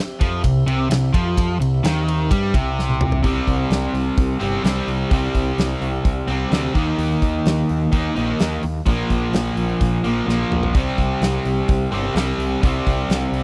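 A straight 4/4 pulse at 128 BPM drives this sunny classic rock cut, where a very quiet, piping tonewheel organ through a rotary speaker holds sustained chords until 3.2 seconds while two overdriven picked guitars play the riff, one crunchy with harmonic tremolo and the other a bright semi-hollow sitting up front, over a growling, overdriven electric bass and a huge arena drum kit with a punchy kick, bright cymbals and fills at 2.8 and 10.3 seconds, in a dry, close 1970s-style studio sound.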